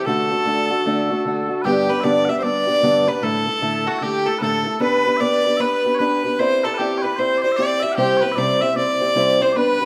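A clear, earthy fiddle carries the melody from the first moment, bowed up front with light vibrato, while sweet, mellow small bagpipes hold a continuous second line alongside it and a dark, boxy fingerpicked archtop guitar accompanies in close view. This bright, cheerful Celtic folk excerpt moves in a lilting swung four, shifting into a new section at 1.6 seconds as the harmony travels from D through G and Dsus2/A to G/B, Cadd9 and C. A moderate recital-hall reverb gives the trio the resonant air of a church or concert hall.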